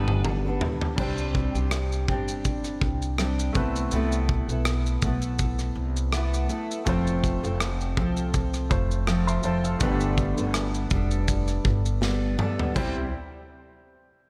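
A relaxed 82 BPM groove in 4/4 with a gentle 16th-note swing sets this carefree acoustic pop excerpt in C major, its drum kit opening with a fill that runs to 1.0 seconds and returning with another near 12.0 seconds. The up-front kit blends crash cymbal, kick, rim click, shaker, snare and toms, with a punchy kick, a medium-tuned snare and a mid-forward, rolled-off top. A growly, woody pizzicato upright bass anchors the low end, while a fingerpicked dreadnought steel-string guitar, double-tracked with slapback echo, adds a warm bed of accompaniment. A clear, polished baby grand piano sits further back, also touched by slapback echo. The easy-going harmony moves from Gadd9 through Csus2, Amadd9 and F, returns to Gadd9, and then settles on C at 12.8 seconds, all in a light studio reverb.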